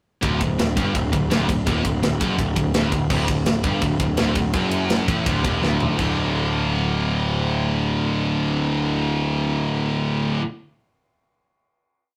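From 0.2 s, a scooped, high-gain guitar and a sludgy overdriven guitar pound out a low single-note riff in D major at 166 BPM in straight 4/4, doubled by a growly, fuzz-laden picked bass in driving eighth notes and propelled by a tight metal drum kit with bright cymbals, tight kick, snare, ride and toms, until a drum fill at 5.6 s leads into a final D5 chord at 6.0 s, closing this short, epic and dark heavy metal piece, captured as a rough rehearsal-room recording with tube saturation and light reverb.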